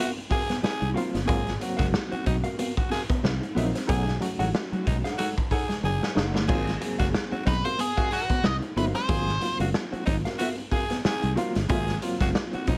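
A strutting 92 BPM funk groove in 4/4 with a light sixteenth-note swing sets a playful mood in Ab mixolydian, moving from Ab13 to B9 at 3.9 seconds and back to Ab13 at 6.5 seconds. A gritty garage drum kit with a punchy kick and medium-tuned snare sits up front in a bright stone room, its top rolled off, and plays a fill just before the return to Ab13, while a round, fingered electric bass holds the low end. Two mellow, compressed electric guitars fill out the middle: one plays clean accompaniment, and the other repeats a low riff through spring reverb further back. A barky, reedy electric piano adds overdriven stabs with fast tremolo, heard through its built-in speakers in the background. A raspy, growling tenor saxophone carries a breathy second line with light vibrato, and a nasal lead guitar with a parked wah cuts in with an overdriven, picked melody between 7.5 and 9.6 seconds. The sound is dry, cut from a longer piece.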